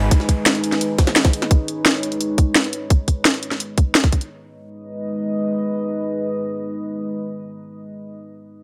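A deep, moody sawtooth pad holds sustained G# minor chords up front with chorus and sidechain pumping until 7.6 seconds, while a tight electronic kick and a cracking drum and bass kit drive this aggressive, dark technical drum and bass fragment at 172 BPM until about 4.3 seconds, joined briefly by a very quiet, gritty, pitched-up jungle sampler kit and a faint downlifter in the first 1.5 seconds, all set in light digital ambience.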